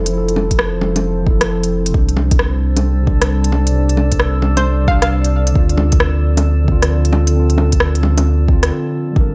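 Rainy and wistful, this short future garage excerpt moves at 133 BPM in 4/4 with a 65% swing on the sixteenths, drifting from Fmaj7 to Csus2 and then Dm7. A mellow tine electric piano carries the accompaniment, its clean tone roughened by vintage 12-bit sampler grit and trailed by analog delay, while a warbling, nostalgic tape-like pad sits in the background with chorus, phaser and its own reverb, both parts breathing with sidechain pumping. Underneath, a round sine sub bass sits up front and pumps along with them, joined from 0.5 seconds by a deep, layered electronic kick with a tape-warm edge and a small-room character. An organic electronic kit of bongos, smooth hi-hat and rim click stays forward in the mix, and a glassy texture of drifting overtones fades in at 2.6 seconds on a calm, sustained A4. Briefly, around 4.6 seconds, a hollow, nasal square-wave pluck with a bouncy filter snap flickers through a short melodic figure before the organic kit and texture drop away for a break at 8.7 seconds.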